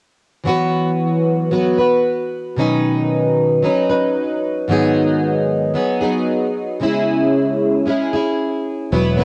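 Acoustic pop in E major at 114 BPM, this short excerpt from a longer piece feels heartfelt and sunny, moving in 4/4 with a light swing on the sixteenths. A picked, plugged-in steel-string acoustic guitar carries the accompaniment from 0.4 seconds, sitting up front with an auditorium-sized body, double-tracked and coloured by cassette tape. It moves through Esus2, Badd9, G#m7 and C#m, spanning G#2 to B4. A fingered electric bass, direct and amped with a warm tone, arrives only at 8.9 seconds on a low E1 just before the close at 9.2 seconds. A moderate spring reverb and the homespun cassette recording colour the whole.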